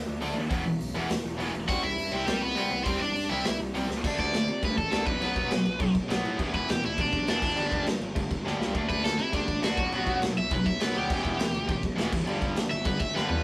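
A rough rehearsal-room recording with a small room's ambience captures an aggressive, urgent punk rock cut from a longer piece in E minor at 204 BPM, where a growly fuzz bass opens alone, a double-tracked distorted guitar riff and a punchy, saturated garage drum kit join at 0.2 seconds in half time, and a cranked, overdriven stack guitar enters at 1.7 seconds before tearing into a solo from 4.0 seconds over power chords, with drum fills arriving at 3.9, 8.5 and 13.2 seconds.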